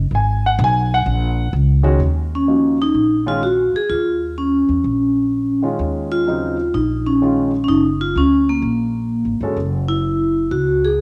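A swung 4/4 pulse drives this searching, intense slice of modal jazz, cut from a longer piece. The pizzicato upright bass sits up front throughout, its steel strings giving a woody tone. A dark concert grand piano supplies mellow, intimate accompaniment with deep bass, a smooth, vintage character and audible action noise, then drops out at 9.6 seconds. At 2.4 seconds the vibraphone enters with the melody, its metallic, ringing tone struck with medium mallets and colored by a slow motor vibrato. The harmony opens on G#9sus4, settles into a long stretch of Ebm11 and closes on Gb7(no3), all inside a moderate echo chamber reverb.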